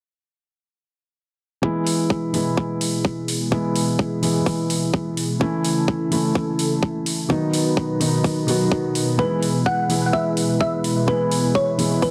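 A punchy, overdriven kick lands on a straight 4/4 pulse at 127 BPM from 1.6 seconds, with metallic, overdriven hi-hats joining at 1.9 seconds, driving this anthemic, euphoric festival progressive house passage in E major, where a soft, felt-muted upright piano with audible action noise pumps against the kick under delay, a lush, detuned sawtooth unison pad holds bright, chorused chords through a filter sweep, and a round, tine-like FM pluck carries the melody from 9.2 seconds, all set in a dark production with a moderate digital room reverb as the chords move from E to A to B and back to E.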